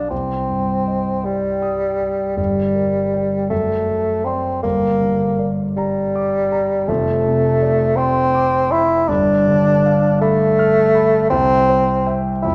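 A dark, warm production sits inside a wet scoring-stage reverb with a 1.8-second tail, giving this short classical excerpt a soft, enveloping glow. It is a romantic duo for bassoon and grand piano in a rubato 6/8 at about 53 beats per minute counted in dotted quarters, tender and serene in mood. The mellow bassoon carries the melody up front between G3 and E4, its light vibrato and roomy, distant character lending a gentle, singing line. The grand piano accompanies throughout, dusky and intimate, with smooth, vintage tone and audible action noise, spanning from F1 to F6. The harmony drifts from C minor through G minor and a D7 over F-sharp, then turns toward C major from 6.9 s via Dm7 and G9 before settling on a C major chord at 11.3 s, as the passage is cut from a longer piece.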